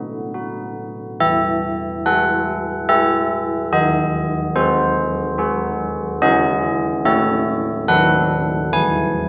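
A classical tune for church bells in E major, this short passage cut from a longer piece moves at 72 BPM in a straight 3/4, its mood both festive and serene. Old church bells play alone throughout the 9.3 seconds, sitting up front with a bronze, clangorous ring, an iron-clapper strike, beating tones and a minor-third overtone, spanning D#3 to G#5. A moderate scoring-stage reverb lets each stroke bloom as the harmony passes through C#m and A before a B7/D# leads home to E at 8.7 seconds.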